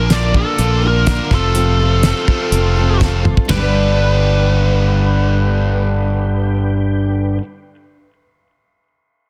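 Jangly and nostalgic, this folk rock and heartland rock excerpt moves from Bb to F before settling on G at 3.5 seconds, where a new section begins. A biting, overdriven lead guitar carries the melody through digital delay over a double-tracked electric guitar riff, a bright picked steel-string acoustic with audible finger squeak, a very quiet tonewheel organ holding smooth chords through a slow rotary speaker, and a direct, amped fingered bass sitting up front. A dry, damped 70s drum kit with a tight kick and fat snare plays a fill at 3.0 seconds and stops at 3.6 seconds, all set in studio reverb under a dense, heavily limited modern master.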